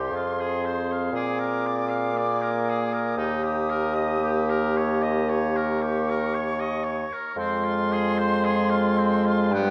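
Elegiac and melancholic, this slow romantic movement for wind quintet drifts in 3/4 at 55-60 BPM with a rubato feel, cut from a longer piece and moving from F minor through Bb7 to Eb before settling back on F minor at 7.4 seconds. A pure, distant silver flute carries the melody with vibrato and tongued notes, while a clear oboe with light vibrato and a soft attack sings the second line, and a roomy clarinet sits in the background as accompaniment. The mellow French horn joins at 0.1 seconds as further accompaniment, and the smooth-topped bassoon stands up front on the bass, all bathed in a wet concert hall reverb.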